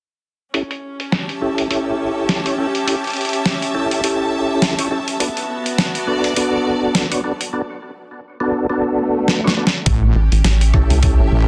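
A gritty, swaggering glitch hop excerpt at 103 BPM opens with percussive tonewheel organ stabs, mellow and round with key click, fast rotary and chorus vibrato, pumping under a filter sweep over A7 and Bm7, set against a pitched-down, tape-warm boom bap kit of filtered hats, rim click and snare, and a clear, biting string section. An electronic swell rises in the background from 8.9 seconds as the drums fill. At 9.9 seconds a heavy, saturated wobble bass and a thumpy kick arrive, joined at 10.2 seconds by a rubbery, hollow square bass, both basses up front in a dense, heavily limited mix with light digital ambience.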